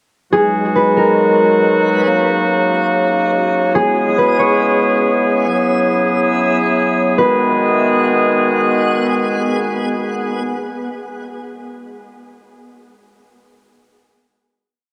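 Spacious and ethereal, this short, complete hip hop piece drifts in free time through the atmospheric haze of cloud-rap, set in G# minor with tuning at A4 = 437 Hz. A concert harp carries the melody from 0.3 s, its thumb-plucked, ringing acoustic tone shaped into a sparse looping figure that repeats like a sampled loop, softened by a low-pass filter and trailed by tape echo before it falls away at 9.2 s. Beneath it, a woodwind section holds sustained chords as a tight, up-front pad with light vibrato and a vintage, classical character, moving through G#m7, D#m7, E6 and F#9sus4 before returning to G#m7. From 1.2 s a reversed, swelling texture rises quietly in the background, a dreamy, detuned and granular pad with a soft attack, long release and bright sheen bathed in its own reverb. The piece opens as a breakdown and settles at 7.2 s into a final chord, the woodwinds and reversed texture lingering together to the end inside a huge ambient reverb and a dark, warm production.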